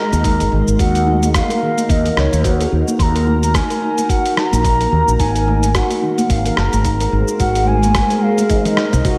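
Soaked in lush hall reverb, this dreamy excerpt of earthy organic downtempo moves at 109 BPM with a swung 16th-note feel in Eb dorian, where a hollow, tongued bamboo bansuri carries the melody through delay over a meditative, ringing handpan playing arpeggios. A cloudy, blurred granular pad sustains chords in the background with subtle chorus and sidechain pumping, while a dark, round fretless bass sits up front with analog chorus, moving through Absus2, Ebm and Abadd9. A gritty, compressed sampler-style kit with cabasa, hi-hat, rim click and toms rides on a thumpy electronic kick, very quiet bright congas and bongos play until 8.5 seconds, and a drum fill and faint electronic swell close the passage at 9.2 seconds.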